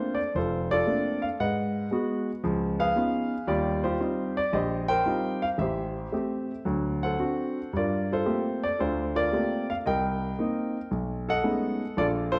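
A clear grand piano carries this solo jazz passage on its own, sounding intimate and natural and sitting up front in the mix, with the noise of its action audible. The mood is swinging and sophisticated, its eighth notes carrying a lilting swing feel that loosens at times into rubato. The harmony moves through rich extended chords, opening on Bbmaj9 and passing through Abm7, Db9 and Eb69 before shifting to Am7, D7 and Gm11, then closing the phrase on Cm7 and a tense B13 at 10.9 seconds. The piano spans a broad register, from deep bass notes in the low octaves up into the treble. A large studio reverb gives the playing a lingering, spacious tail, while the overall production leans dark and warm. Cut from a longer piece, the fragment lasts 12.4 seconds.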